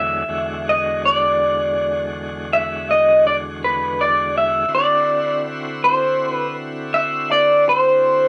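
An electric guitar through a small old amp carries the melody up front, its slightly broken-up, compressed tone coated in lush chorus and cassette grit, while a bright tonewheel organ holds sustained chords farther back, lightly overdriven and turning through a slow rotary speaker. This gritty, soulful blues excerpt rolls in a slow 12/8 with a straight feel, moving from E7 to D7 at 4.7 seconds. The home cassette recording sits in moderate studio reverb with a dulled, lo-fi top end, and the whole clip lasts 8.3 seconds, cut from a longer piece.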